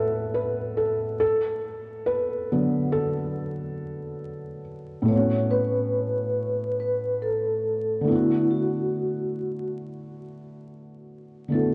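Swung sixteenths give this cosy, mellow hip hop snippet its lazy sway, as a dark, thickly felted upright piano with audible action noise plays alone until the soft-mallet vibraphone enters at 5.1 seconds with a ringing, metallic melody and fast motor vibrato, both parts filtered and up front in a dreamy mix soaked in church reverb and vinyl crackle.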